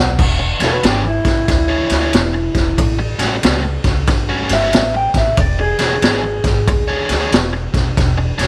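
A slightly broken-up, lo-fi electric guitar through a small old amp carries a soulful, compressed solo melody from 0.6 to 7.5 seconds over a rollicking electric blues shuffle at 92 BPM in E mixolydian, backed by a biting overdriven guitar riff, a woody pizzicato upright bass that opens the fragment at 0.0 seconds, and a raw, gritty garage drum kit with a punchy kick and high-tuned snare, set within light reverb and small room ambience.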